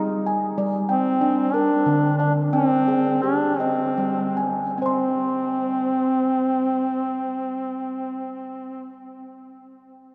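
A warm, folk-style duduk carries a gentle, meditative melody in C minor with vibrato and scooped notes over bright, round, ringing arpeggios from a steel tongue drum struck with firm rubber mallets, both parts touched with delay and set up front in a vast cathedral reverb, as this world excerpt in a slow 6/8 of 48-64 BPM drifts between Cm and Gm and slows down from 0.6 to 4.8 seconds before the harmony falls away at 4.8 seconds.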